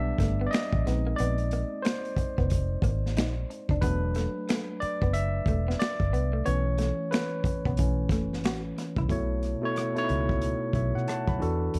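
A barky, lightly overdriven tine electric piano takes the solo spotlight until 9.1 seconds in this sultry, late-night neo-soul R&B excerpt, voicing suspended ninth chords over a round, foam-muted vintage electric bass and a gritty, saturated breakbeat kit of punchy kick, snare, hi-hat, rim clicks and finger snaps on a swung sixteenth-note feel, while a slightly broken-up, lo-fi electric guitar with warbly pitch drift traces a quiet second line until 9.1 seconds, inside a dark small-room ambience.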